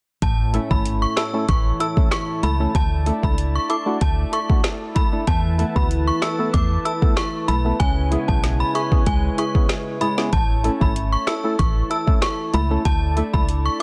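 A straight, bouncy dancehall groove from an up-front afro-pop drum kit, with its deep kick, woody snare, metallic hats and gritty 12-bit sampler texture, drives this summery section of a longer piece, where a dark, hollow FM bass sits up front beneath thumb-plucked flamenco guitar arpeggios, a smooth, detuned analog pad and percussive organ stabs entering at 0.5 s, both pumping with sidechain, while an inharmonic, ringing FM synth chime carries the melody through ensemble chorus and delay, all in a dense, heavily limited modern master.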